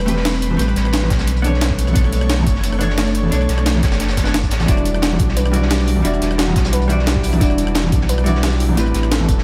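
This short cut from a longer piece of liquid drum and bass opens with a dark, clean hollow-body jazz guitar comping over an ethereal, detuned pad that pumps in the background, a round sine sub bass sitting up front, and a gritty sampler-style breakbeat with a high-tuned snare and rim clicks. Moving at 176 BPM in 4/4 with a straight feel in E minor, the mood is melancholic and rolling as the chords pass from Am9 to Bm9, Em9 and back to Am9. Almost at once a saturated, rolled-off second breakbeat kit and ringing, distant congas tuck in behind, and a thumpy electronic kick joins at 1.1 seconds. At 4.7 seconds a soft, harp-like synth pluck begins arpeggiating, its tone shaped by a moving notch filter and tape echo. The whole mix is dreamy and soaked in a cathedral-sized reverb.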